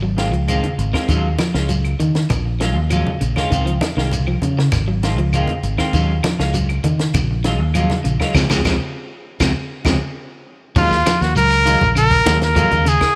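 A straight 4/4 afrobeat groove at 99 BPM drives this hypnotic excerpt in Eb dorian, built on a dry cocktail kit with a punchy kick, high-tuned snare and dark cymbals, and a round, dark fingered bass up front, while a grainy, distant shekere rings out in a large room and woody claves and low-tuned congas sit in the background. A twangy, slightly broken-up electric guitar picks arpeggios as a clean semi-hollow guitar with lush chorus plays stabs over chords moving between Dbmaj9 and Ebm11, and the band hits an accent from 8.4 seconds. At 10.8 seconds a bright trumpet with light vibrato and slapback echo takes the lead up front, all in a light studio reverb.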